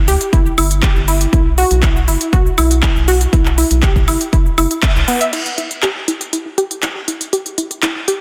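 The recording is dense and heavily limited, with a modern master and a light reverb, and this progressive house cut from a longer piece feels emotional and driving in a straight four. A round, deep analog bass blended from square, sine and triangle waves with wave-folding sits dark and sustained underneath, pumping against the sidechain until 5.0 seconds. A punchy, layered electronic kick drives the groove until just before then. An up-front unison pluck of detuned sawtooth with a noise layer plays lush, decaying arpeggios through digital delay, also ducking with the sidechain, while the house kit adds crisp hats, handclaps, shaker, woodblock and crash cymbal, its hats, percussion and cymbals breathing with the same pumping. The chords move from Em/G through B5 and Esus2 to Em; the band hits an accent at 4.8 seconds, and from 5.3 seconds a filter sweep runs across the pluck as the kit carries on.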